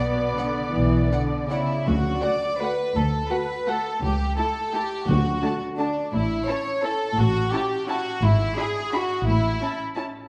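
Up front, a pure, floating violin section carries a second line beneath a darker, intimate violin melody played sul tasto with light vibrato. Warm violas, close cellos with vibrato and double basses entering at 0.8 s fill out this sweeping, dark classical excerpt in a rubato 3/4. Articulate hard-mallet timpani strikes arrive at 1.9 s and 5.1 s, all set in a reverberant scoring-stage space.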